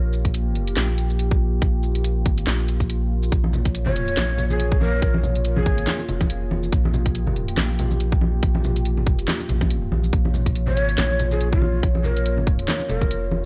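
A dark analog pad and a soft, round dub sub bass open this heavy, meditative deep dubstep excerpt in Bb dorian, the pad's detuned sawtooth chords thickened by chorus and phaser over a single Bb minor harmony. At 141 BPM with a half-time feel and a light 16th-note swing, a tight electronic kick sits up front alongside a garage kit of cracking snare, handclaps, hi-hat and shaker, both re-recorded in a small room. Low-tuned congas with a thick skin and soft hands come in at 3.4 seconds, bringing an acoustic, live-room texture to the electronic drums. A breathy, close-miked ney carries the melody in two short phrases, first at 3.9 seconds and again at 10.7 seconds, its unsteady vibrato trailing off into dub echo. The overall sound is dry, with little reverb, leaving the deep, mellow sub to fill the low end beneath the moody pad.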